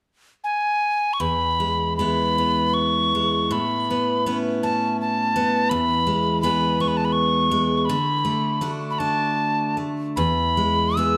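Set in a loose, rubato 3/4 that drifts between 75 and 86 BPM, this Celtic slow air in E mixolydian has a tender, nostalgic mood and is cut from a longer piece. A mellow tin whistle carries the melody from 0.4 seconds, its airy, metallic tone marked by a soft chiff on tongued notes and a gentle vibrato as it sings between G#5 and E6. At 1.2 seconds a picked steel-string acoustic guitar enters underneath, a full-bodied jumbo sound with bright, fresh strings and the occasional finger squeak, spanning E2 to G#4. The accompaniment moves through E, Aadd9, E, D and back to E, the shift to D lending the tune its wistful mixolydian colour. Both instruments sit up front in a light reverb, playing together until the close at 11.2 seconds.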